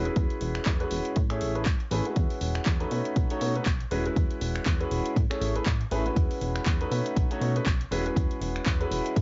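A swung sixteenth-note groove in 4/4 drives this funky, feel-good slice of filtered disco house, with an overdriven, up-front electronic kick entering at 0.2 seconds and an analog drum machine of finger snaps, handclaps and pumping hi-hats carrying a roomy, driven grit. A plucky, wave-folded analog bass with a fast attack and decaying filter pluck pumps beneath a brilliant concert grand piano, whose phased, low-pass-filtered, tape-worn chords cycle through E69, Amaj9 and B9 with long sustain. The whole sounds dry and lo-fi, a home cassette recording with its top end dulled.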